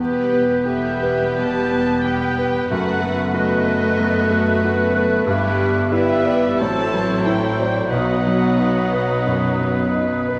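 A rubato 4/4 pulse carries this passionate, brooding classical passage, cut from a longer piece, in which a clear grand piano with audible action noise leads the melody and a dark chamber violin section joins it with expressive vibrato from 0.7 s. An oboe, a clarinet, a hollow flute section and a rich symphonic violin section weave second lines, while a bassoon and a very quiet viola section accompany, a distant French horn section holds sustained chords, and bright cello and woody double bass sections anchor the bass. Round, faint timpani played with soft mallets enter at 7.9 s, and a wet recital hall reverb surrounds the ensemble.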